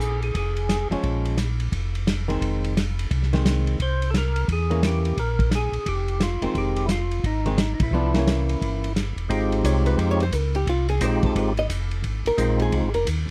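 Bluesy and smoky, this soul jazz organ trio excerpt swings in 4/4 with a mellow, round tonewheel organ carrying the bass through a slow rotary speaker, a dry, muffled drum kit with dark cymbals, a dark, compressed hollow-body archtop guitar comping from 0.9 seconds, and a fat, lightly overdriven percussive organ melody that drops out briefly before returning at 3.8 seconds, with a band accent at 7.7 seconds and a guitar solo taking over from 9.3 seconds, all recorded close and up front with little reverb.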